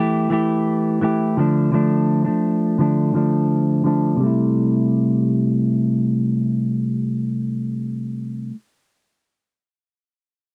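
Indie pop in C major at a relaxed 85 BPM in straight 4/4, this short excerpt cut from a longer piece has a hazy, laid-back mood. A lone clean electric guitar carries the accompaniment from 0.0 to 8.6 seconds, fingered and up front, with a twangy, scooped tone that sounds compressed. A subtle chorus and a warbly pitch drift give it a gently unsteady shimmer, while a low-pass filter sweeps across the opening stretch up to 4.2 seconds. The harmony moves from Emadd11 to Dm, then settles on C6 at 4.2 seconds as a new section begins. The sound is dry and close, like a 1970s studio recording, with only light reverb and a slightly detuned pitch center that adds to the dreamy feel.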